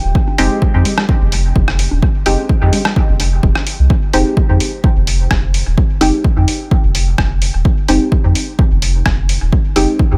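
A very quiet, dark detuned pad and a round, mellow sub bass pumping under the sidechain open this deep, nocturnal dub techno excerpt on Fm7, joined by a punchy, overdriven kick up front, tape-warm congas in the background until 3.6 seconds, muted sawtooth chord stabs with chorus, phaser and dub echo, and a muffled, pitched-down sampler kit of hi-hat and rim click, while the pad drops out at 3.9 seconds and the groove continues in a digital ambience.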